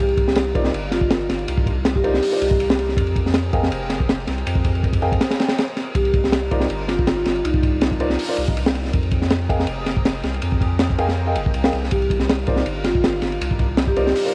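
A lush, detuned unison pad, a saturated sub bass and a marimba open this excerpt of frenetic, nostalgic drum and bass in the jungle style together, the marimba played with medium mallets and carrying a short melody through a dub echo. Set in C minor at 161 BPM, the harmony alternates between Cm11 and Fm11, and the pad holds sustained chords coloured by chorus, phaser, 12-bit sampler grit and cassette tape. A crunchy acoustic breakbeat kit sits up front, its punchy kick, high-tuned snare, hi-hat and dark ride cymbal saturated and gritty with a rolled-off top. The deep, sine-based sub bass runs thick underneath, while a mellow baby grand piano adds stabs from 0.6 seconds, also treated with tape and dub echo. The marimba returns in brief phrases at 6.0 and 11.9 seconds, all within a small room ambience and a homemade cassette character.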